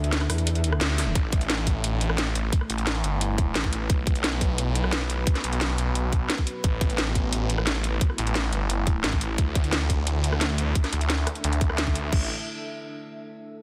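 A dense, heavily limited mix with light reverb carries this tense, aggressive excerpt of dark technical drum and bass at 175 BPM, where a metallic, FM-built wobble bass opens under a brooding sawtooth pad with chorus and sidechain pumping, then gives way at 1.2 seconds to a snarling, detuned saw bass with tube-saturated distortion and a tight layered kick, while a cracking snare, metallic hats, rim clicks and crashes drive the electronic kit up front over chords moving from D5 through Asus2 and B5.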